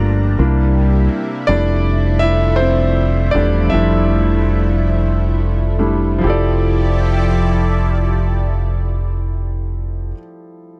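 A dry, close recording in a 1970s studio style carries this intimate, tender slow R&B fragment, cut from a longer piece, in F major with a straight six-eight feel at roughly 44-55 BPM in dotted quarters. A warm, smooth concert grand piano with deep bass and long sustain sits up front and takes a solo through the opening section, moving from a C7 into an Fmaj13 as the tempo slows from 1.5 to 6.2 seconds. Beneath it, a deep dub fingered electric bass, dark, round and amped, holds the low end from the start. A lush, thick unison pad built from detuned sawtooth and square waves sustains chords with a slow attack, its bright tone colored by chorus and phaser. After the second section begins at 6.2 seconds, the bass and pad stop at 10.1 seconds while the vintage-toned piano rings on to the close.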